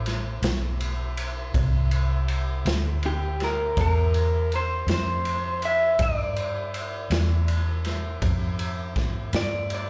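A dark, foam-muted fingered bass and a gritty, saturated garage drum kit of punchy kick, snare and dark ride cymbal open this swaggering slow blues excerpt in 12/8 at 54 BPM, moving from C7 to G5. At 3.1 seconds a slightly broken-up electric guitar through a small old amp takes the melody, its compressed picked tone carrying a warbly pitch drift and slapback echo. The rollicking performance sounds like a live club gig heard through the venue's PA, with small-room ambience wrapped around the up-front band.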